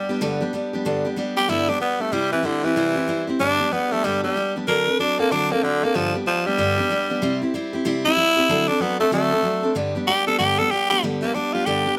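A fast swung 4/4 at 189 BPM drives this rowdy, retro rock fragment in G major, with a full-bodied, picked steel-string acoustic guitar laying down accompaniment through a G, C and D7 progression. A raspy, growling tenor saxophone sits up front and close-miked, taking a gritty, bright solo from 0.9 seconds with light vibrato and a pop-style edge. Light reverb gives the pair a touch of space, and the passage is cut from a longer piece.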